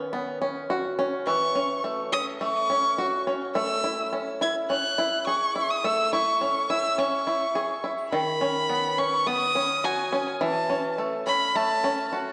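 A lush concert hall reverb with a long tail surrounds this short cut from a longer folktronica piece, lending its playful, hopeful mood a spacious glow. A bluegrass banjo, played with fingerpicks and placed up front, opens at 0.0 seconds and runs throughout with twangy, percussive arpeggios in a straight four-four feel. At 1.3 seconds a single bowed violin enters up front with the melody, sitting high above the banjo and carrying a warm, expressive tone with soft attacks, vibrato and portamento. A digital delay on the violin adds echoing repeats that blend into the hall's ambience. Underneath, the harmony moves through Badd9, F#m7 and Amaj7 before returning to Badd9 and F#m7, giving the passage a bright, open lift.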